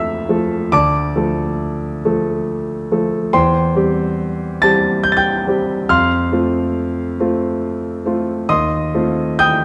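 A smooth, vintage-toned grand piano sits up front and plays alone through this passionate, romantic classical character piece cut from a longer work, moving with rubato in triple metre across a range of D2 to A6 as the harmony passes from F through Dm and C/E back to F before an F7/Eb arrives at 8.5 seconds, set in a dark, warm production with moderate recital hall reverb.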